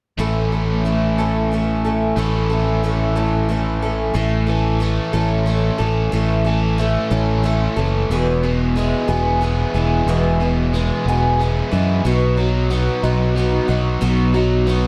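The recording has a dark, warm production, with a moderate large-studio reverb giving the mix a sense of space. This hopeful, nostalgic folk rock and heartland rock excerpt moves at 61 BPM in dotted quarters, in a straight 6/8. A picked twelve-string acoustic guitar carries the accompaniment with a shimmering, octave-doubled parlour tone. A biting overdriven guitar, double-tracked and up front, plays the riff. A fingered electric bass, round and direct through its amp, holds the low end close to the listener. The three parts play throughout this cut from a longer piece, which shifts into a new section at 4.2 seconds; the harmony then moves from A to E at 8.1 seconds and on to B at 12.0 seconds.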